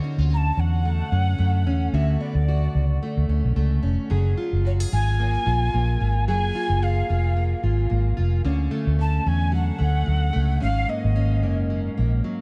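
A gently swung sixteenth-note groove at 110 BPM in 4/4 drives this dreamy, sunny indie pop fragment, cut from a longer piece. A plugged-in steel-string jumbo acoustic guitar opens at 0.0 seconds with a fingerpicked accompaniment, its fresh strings sounding full-bodied and warm through subtle chorus, vibrato and analog delay. A vintage muted electric bass, played with the fingers, sits up front with a dark, round, punchy, foam-muted tone from its amp. Above them an alto ocarina carries the melody with a clay, airy, expressive voice, tongued and shaded by vibrato, its highs rolled off and its sound spread by ensemble chorus and analog delay. The harmony moves from Dmaj7 to Gbmaj9, back to Dmaj7, and settles on Ab9sus4 at 10.6 seconds. A small room ambience and an echo-heavy mix surround the whole.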